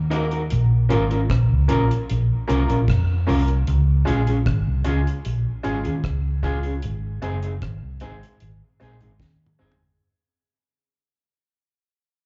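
A straight, unhurried 4/4 roots reggae groove sets a laid-back, warm mood in this short fragment cut from a longer piece. Up front sits a vintage muted electric bass, dark and round with a foam-muted, amped tone, holding the low end, while a deep acoustic drum kit with a high-tuned snare, tight kick, rim clicks, hi-hat and toms keeps a dry pulse. An electric guitar at the edge of break-up, slightly broken-up and fingered, adds accompaniment trailed by dub and slapback echo, and a brilliant baby grand piano punctuates with natural-sounding stabs carrying its own slapback echo. The harmony moves from Ebm and Bbm to Db and then Ab as the music shifts into a new section at 3.7 seconds, where a long fade-out begins. A drum fill arrives at 9.2 seconds, and the whole performance sounds like a live club gig heard through the venue's PA, captured on cassette with small-room ambience, club reverb and a dulled top end.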